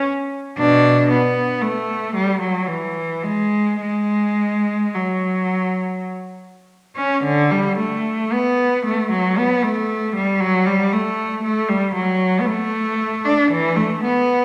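A single bowed cello opens alone, rich, focused and close, with vibrato, playing a serene, dance-like baroque-style suite movement in 3/4 at a slow 51-58 BPM with flexible rubato. The cello sits up front in a wet recital hall reverb, its line moving into a contrasting second phrase at 7.2 s before this short excerpt from a longer piece ends at 14.4 s.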